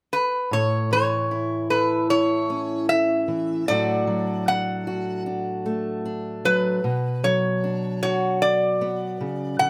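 Nostalgic and warm, this short acoustic folk passage for a duo or small band moves at an unhurried 76 BPM in a straight 4/4, in A major. A metal-body resonator slide guitar carries the melody from 0.1 seconds, its bright, metallic and nasal voice sitting up front, played with a slide and fingerpicks. From 0.5 seconds a fingerpicked steel-string acoustic guitar supplies the accompaniment, its concert-style tone spanning low bass notes to the middle register, also close in the mix. The harmony moves from A to D over A and then to B minor, giving the phrase a gentle, reflective arc before it is cut off at 9.7 seconds. Close, detailed microphones capture both instruments clearly, set within a moderately large studio reverb that lends a sense of space.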